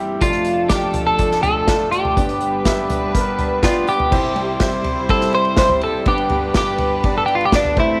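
Piano-driven pop in C major at 123 BPM in a straight 4/4, this short excerpt cut from a longer piece feels warm and anthemic. A concert grand piano carries the accompaniment from the first moment, with deep bass, long sustain and a touch of audible action noise giving it an intimate yet polished presence. Behind it, a dark studio string section holds sustained bowed chords in the background, its reedy, gut-string tone and light vibrato suggesting a period style. At 0.2 seconds a bright, twangy twelve-string electric guitar takes the melody up front, clean and picked with compression and a slapback echo, alongside an acoustic drum kit played with bundle sticks, featuring a punchy kick, a medium-tuned snare, dark cymbals and toms. The harmony moves from F6 to G, then a new section at 4.1 seconds moves through C and back to G, all set in a moderate plate reverb.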